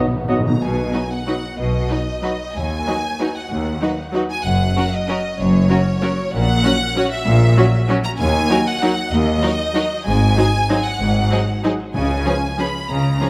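This classical passage for string orchestra sounds elegant and festive. It moves in a quick 3/4 at 191 BPM in B major, with uneven beats and a rubato feel. A close, dry timpani fill in the background opens the piece at 0.0 seconds and returns briefly near 11.9 seconds. The melody is carried high by a clear, smooth violin section with vibrato, while a second violin section plays a softer line in the background. Beneath them, a distant viola section adds rich, expressive accompaniment with portamento. A focused, lush cello section and an even double bass section with light vibrato share the bass from 0.6 seconds. The harmony moves from B through F-sharp and D-sharp minor toward a closing C-sharp seventh. A scoring-stage reverb gives the strings a spacious, resonant glow in this fragment of a longer work.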